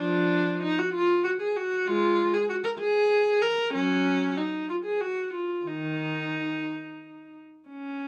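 In a rubato 6/8 at 58-66 BPM counted in dotted quarters, this solemn, introspective baroque-style suite movement in Eb minor, cut from a longer piece, features one unaccompanied bowed viola, rich and expressive with vibrato, soft attacks and portamento, ranging from Eb3 to Bb4 for its full 8.1 seconds within a dark production touched by light reverb.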